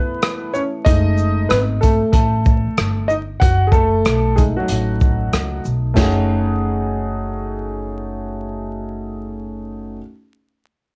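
A present, long-sustaining grand piano opens this nocturnal, smoky slice of jazz-hop, taking a solo over a B7sus4 chord that settles onto F#m69. A crunchy breakbeat kit arrives at 0.2 seconds, sitting up front with a tight kick, medium-tuned snare, rim clicks, shaker, hi-hat and dark china cymbal, all saturated and gritty with a rolled-off top. At 0.9 seconds a woody pizzicato upright bass joins low in the mix, carrying the bottom end on steel strings. The groove swings its sixteenths in a hip hop pocket until the drums drop out at 6.2 seconds, leaving piano and bass through the brief second section. A moderate studio reverb, the cassette home recording and a layer of vinyl crackle give the whole fragment a worn, homemade warmth.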